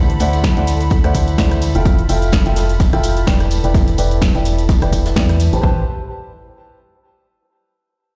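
A large studio reverb, like a big sound system in a bare room, surrounds this energetic, bittersweet piano house excerpt in A minor at 127 BPM, with a lightly swung 4/4 feel and chords moving through D9, Fmaj9 and Em7 before landing on Am9 at 5.6 seconds. A punchy analog electronic kick and an up-front, hollow, dark, organ-like FM bass with a fast, decaying attack drive the groove, the bass pumping against the kick and moving through a filter sweep, while a clear, boxy grand piano riff with short sustain also pumps and sweeps through a low-pass filter and digital delay. Behind them, a muted, veiled chamber violin section holds soft, pumping chords with vibrato; a punchy drum machine adds snare, hi-hat, rim click and cabasa; a close tambourine with egg-shaker and handclap colour sits in the background; and a very quiet, airy, polished big-band kit adds hi-hat and snare.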